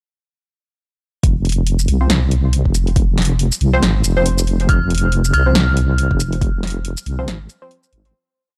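A dark, heavy deep dubstep piece in F minor at 139 BPM drops in at 1.2 seconds with an up-front wobbling bass line of detuned sawtooth and sine, an overdriven kick, and a punchy half-time beat of closed hi-hat, snare and shaker, swung on the sixteenths and re-recorded in a small room. Muted, evolving chord stabs with chorus and dub echo arrive sparsely at 2.0 seconds, one shape moved in parallel, and an eerie, inharmonic FM bell joins at 4.7 seconds with call phrases roughened by vintage 12-bit sampler grit. The dry hardware sound fades out toward the close of this short, complete piece.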